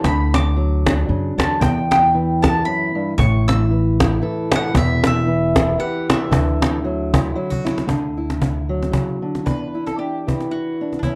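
A lilting 3/4 swing at 115 BPM carries this wistful, intimate acoustic folk piece in E dorian, cut from a longer performance. A snappy, hard-handed cajon and a fingerpicked archtop guitar sit up front, with audible finger squeak on the guitar. A round, double-strung mandolin carries the melody over a woody, dark pizzicato upright bass. The cajon plays a fill at 7.5 seconds, and the bass drops out at 8.9 seconds, leaving guitar, mandolin and cajon to close over an Em7 in a dry, close 1970s-style studio sound.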